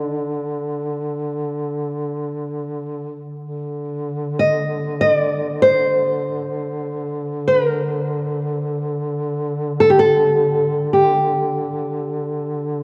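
Heard through worn, warbling cassette tape with pitch drift and a wet church reverb, this solemn, longing Caucasian folk lament in free time, cut from a longer piece, sets an up-front, full-bodied fingerpicked nylon-string guitar melody, with audible finger squeaks, over a dark duduk drone with vibrato that sounds throughout its 12.8 seconds.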